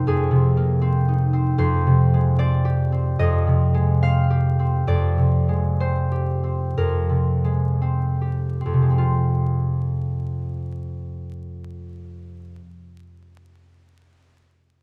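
Classical solo concert harp in F dorian, gentle and wistful, moving with a rubato 4/4 feel between 49 and 78 BPM and slowing over the first 9 seconds. The fingerpicked harp sits up front with a warm, ringing tone across a span from F2 to F5, drifting from an Ab69/F chord to Fm9 before settling on a plain F minor at 9.0 seconds. A wet concert-hall reverb and a vinyl crackle surround this short excerpt from a longer piece.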